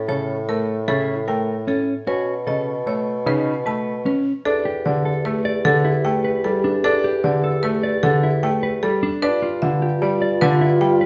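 A distant, roomy bassoon opens this propulsive, hypnotic stretch of minimalist classical pattern music in 6/4, joined almost at once by a buzzing, woody marimba carrying the melody, a clear, up-front concert grand piano in accompaniment and a dark, clean electric guitar playing arpeggios. At 4.5 seconds, as the harmony moves from A(b9) and B7(no3) to Em7 and later G7, a pure, hollow alto flute with vibrato adds a soft second line in the background. A large studio reverb places the ensemble further back in the room, and the passage is cut from a longer piece.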